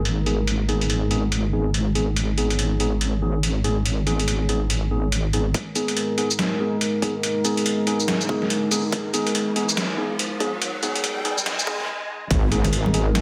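Deep dubstep at 142 BPM in G# minor with a half-time, swung feel, brooding and meditative, where a dark, detuned analog pad holds sustained chords under mellow tine electric piano stabs wrapped in dub echo, a heavy, saturated wobble bass sits up front until 5.5 seconds, then a punchy, overdriven electronic kick drives a build-up with filter sweeps and a riser over the muffled, pitched-down sampler-style hats, shaker and snare, before a brief stop, an impact at 12.3 seconds with the wobble bass's return, and a quick bright conga touch in the background, all in light digital ambience.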